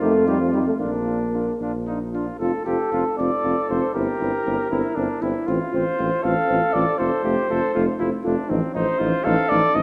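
A stately, noble brass quintet opens all together in F major, moving in a rubato 6/8 at about 78 BPM in dotted quarters. An up-front cornet with light vibrato sings the melody over a soft-edged trumpet second line, a clear close-miked French horn and a warm euphonium in the background, and a prominent tuba bass with its own vibrato. A long recital hall reverb and a dark production surround this fragment of a longer classical piece, whose harmony drifts through Bb and C7/G before settling on F and turning toward F7/A at 8.5 seconds.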